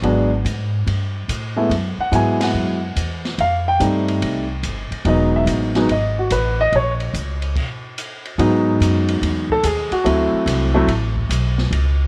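Set in a small room with light reverb, this swinging jazz piano trio fragment from a longer piece features an intimate, up-front grand piano with audible action noise carrying the melody over a woody, thumpy pizzicato upright bass and a dark, smooth drum kit with a boomy kick and high-tuned snare, the band hitting an accent at 2.3 seconds and dropping into a stop from 7.6 to 8.4 seconds before the piano drops out at 10.9 seconds.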